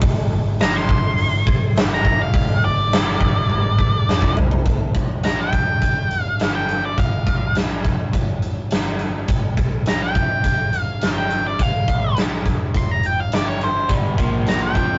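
Blues rock with a southern rock edge, this heavy, brooding excerpt from a longer piece opens on a dark, fuzzed-out octave lead guitar solo over a huge arena drum kit with a fat snare and punchy kick, capped by a drum fill before the second section arrives at 4.7 seconds. Underneath, a very quiet, round, foam-muted fingered bass sits low in the mix, while the drums stay up front. A raw, double-tracked overdriven rhythm guitar enters with a riff at 13.9 seconds, all captured in a rough rehearsal-room sound with saturated, dulled highs and a moderate booth ambience.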